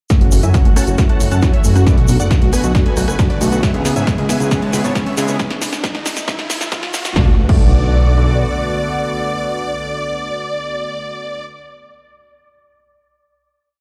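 Emotional and bittersweet, this uplifting trance piece at 136 BPM in B dorian builds over a 4/4 pulse, with an overdriven, up-front electronic kick driving four-on-the-floor beneath a punchy, overdriven techno kit of programmed hats, rim, snare and crash, a grainy hand-played egg shaker in sixteenths, and a fat, nasal analog bass galloping in sixteenth notes, all moving through F#m7, Bm7 and C#m7 while a filter sweep and drum fill push the build. A huge, airy supersaw carries a repeating riff over a pedal note in thirds and sixths with dub echo and sidechain pumping, backed by a lush unison pad's sustained chords and a round, evolving analog pluck arpeggio sitting in the background. The shaker, drums and pluck drop out between about 7.1 and 7.6 seconds, and the bass follows by 8.4 seconds, leaving the supersaw, pad and a very quiet riser and impact to ring out on a final Bm7 in a large, reverberant room.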